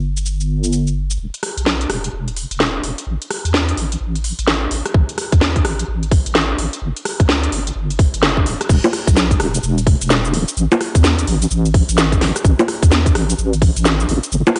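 Skippy and bouncy, this excerpt of two-step UK garage at 128 BPM, cut from a longer piece with a 62% swing on the sixteenths, sets a deep, dark, chorused wobble bass against a tape-warm garage kit of cracking snare, crisp hats, rim click, bongos, cabasa and crash, with a tight electronic kick arriving at 4.9 seconds to carry the build-up into the drop at 8.7 seconds, all bathed in moderate spring reverb and the muffled, lo-fi haze of a home cassette recording.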